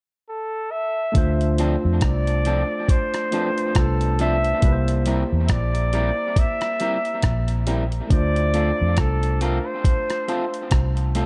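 Swung sixteenths give this short lovers rock reggae section its smooth, longing lilt, as a clear, vibrato-laden flugelhorn carries the melody with dub echo, alone from 0.3 s until a gritty sampler-style kit with a thumpy kick, hi-hat and rim click joins at 1.1 s, followed at 1.2 s by a round, foam-muted fingered electric bass, both up front. A barky, overdriven tine electric piano fills in the accompaniment, and from 1.6 s a slightly broken-up electric guitar through a small old amp adds picked stabs trailed by their own dub echo. The harmony moves from Dm7 to C7 and back, all wrapped in a dark production with light reverb.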